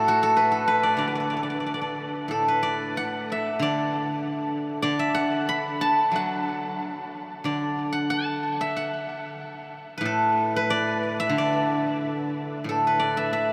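Pastoral and flowing, this Chinese traditional piece for solo plucked strings drifts along in a loose, rubato 2/4. A single acoustic steel-string zither carries everything from 0.0 to 13.5 seconds, played with fingerpicks and sitting up front, its mellow, silvery tone ringing across a range from A2 to B5. A tape echo trails behind the zither's notes, while a huge ambient reverb with an eight-second decay soaks the whole mix in a dreamy haze. A brief opening passage gives way at 2.3 seconds to a longer second section that runs to 12.7 seconds. Cut from a longer piece, the recording feels like a suspended, misty glimpse of open countryside.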